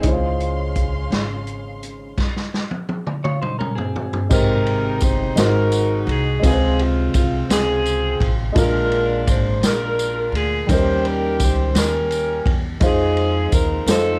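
Slow gospel in 6/8 at 56 BPM in Ab major, uplifting and jubilant, heard as a cut from a longer piece with a home-cassette character and light reverb. A dark, intimate baby grand with audible action noise, a woody, thumpy pizzicato upright bass and a roomy, up-front big-band drum kit with boomy kick and dark cymbals carry the whole passage, while a lush bowed string section holds chords only until 2.1 seconds and a picked, compressed clean electric guitar plays a second line until a drum fill leads to 4.3 seconds. From there a dark, vintage-toned saxophone section takes the melody with light vibrato over a jingly, saturated tambourine, the harmony moving from Abmaj7 through Bb7 and Eb7 to Fm7.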